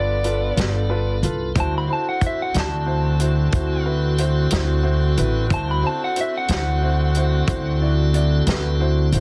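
A slightly broken-up electric slide guitar leads this gritty, laid-back slow blues excerpt in 12/8 at 61 BPM, soloing over a woody, thumpy upright bass that sits up front, a boxy grand piano with audible action noise, a piping tonewheel organ turning through a slow rotary speaker, and a tight saxophone section holding vibrato chords. A tight-booth soul drum kit with a rolled-off top joins on hi-hat, kick and snare at 0.2 s, and the harmony moves from G7 to D7 in D mixolydian. The slide guitar drops out at 7.8 s while the band carries on, everything dry and squeezed into a heavily compressed radio sound.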